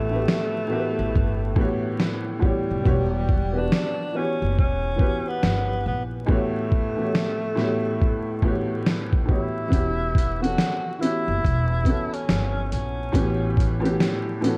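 A swung boom bap beat from a gritty, pitched-down, sampler-style kit with a thumpy kick enters at 0.3 s beneath a boxy, up-front upright piano and a pizzicato upright bass, while a distant, breathy tenor saxophone plays a mellow, whispered solo with vibrato and scooped notes, set in dark lo-fi hip hop production with vinyl crackle that gives this short section, cut from a longer piece, a hazy, nostalgic mood.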